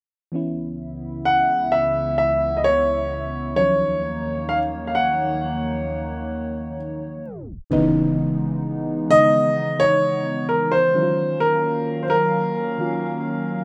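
A mellow, chorused FM electric piano opens this slow, longing and sensual 65 BPM R&B excerpt in C# dorian, soon joined by a hollow, airy, chorused pad and then an intimate, boxy grand piano carrying the melody through tape echo, while a tape stop at 7.3 s gives way to an electronic impact at 7.7 s in a rough home-demo mix with light reverb.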